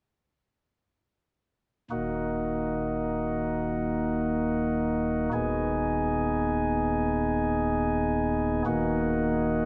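At 1.9 seconds a chamber organ enters alone, its soft flute stops sounding close and up front, with a touch of chiff at the start of each note. This grave, solemn chorale-style fragment, cut from a longer classical piece, moves in free time in E-flat minor, tuned to A4 = 441 Hz. The harmony rests on E-flat minor, shifts to A-flat minor over an E-flat bass at 5.3 seconds, and returns to E-flat minor before the organ stops at 9.7 seconds. The chamber voicing spans from a deep Eb1 up to Ab4, giving the restrained chords a warm, rounded body. A wet cathedral reverb with a long 5.4-second decay surrounds the instrument, lending the brief passage a spacious, devotional air.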